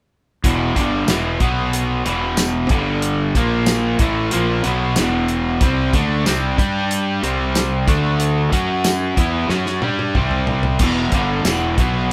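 A crunchy, double-tracked overdriven electric guitar leads this driving, swaggering classic rock excerpt in E minor at 93 BPM, its bright picked riff sitting up front and moving through a chain of power chords such as B5, G5, A#5, C5 and F#5 before settling back on E minor. Beneath it, a fingered electric bass with growly fuzz and overdrive adds a bright, snarling low end, running from 0.4 to 12.1 s alongside the guitar. A damped 70s acoustic kit keeps a straight 4/4 feel with a tight kick, a medium-tuned snare, hi-hat, tambourine and dark cymbals, its dry, rolled-off sound placed up front. The drums break into a fill from 9.5 to 10.8 s, which leads the band back to the E minor chord. The trio sounds as if playing live together in one room, wrapped in a wet studio ambience with a short tail.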